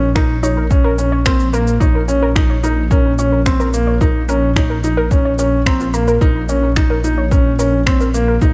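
A felt-muted upright piano sits up front with a soft, intimate riff between Bb3 and Eb4, touched by digital delay, over a deep, rumbling detuned saw bass pumping on Bb1, a warbling lo-fi pluck tracing chorused arpeggios, and a punchy layered electronic kick with tape-warm finger snaps and shaker, giving this cinematic, melancholic piano and strings electronica excerpt in Bb minor at 109 BPM its pulsing, light-reverb glow.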